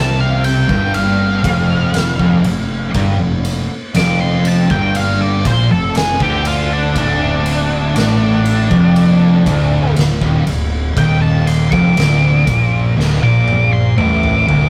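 A slow, straight 4/4 pulse at 60 BPM drives this hypnotic, sludgy stoner and doom metal passage in D minor, cut from a longer piece. An octave-fuzz lead guitar carries a solo from the first moment, its dark, fuzzy tone shaped by wah, distortion and delay as it ranges from D4 to D6. Beneath it, two thick fuzz guitars and a bright, double-tracked distorted electric guitar grind out the low riff in the background, one of the fuzz guitars sitting very quiet. A growly, overdriven fuzz bass played with the fingers anchors the bottom end. The oversized, low-tuned drum kit enters at 0.4 seconds with a boomy kick, fat snare, dark cymbals, ride and toms in a bright stone room that pumps, closing with a fill from 13.0 seconds. The harmony moves from F5 to D minor at 7.0 seconds, and the whole take has the rough feel of a rehearsal room with a short, wet booth ambience and saturated color.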